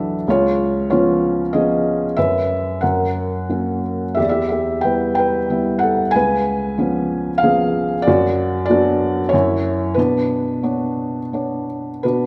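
Set in 3/4 with a loose, rubato feel, the tempo drifts between 82 and 97 BPM across this short classical excerpt for solo piano in B minor. The mood is bittersweet and moody, carried entirely by a felt-muted upright piano that sounds soft, intimate and mellow, placed up front and spanning from C#2 to G#5. The harmony opens on C#7, moves through B5/F#, F# and Em, returns to C#7 around 6.1 seconds, then settles toward Bm/F# and F#5 before resting on a Bmadd9 at 10.0 seconds. A moderate scoring-stage reverb gives the instrument a gentle sense of space around its hushed tone. The piece plays as a single lyrical passage lifted from a longer work, with the piano sounding until 12.3 seconds.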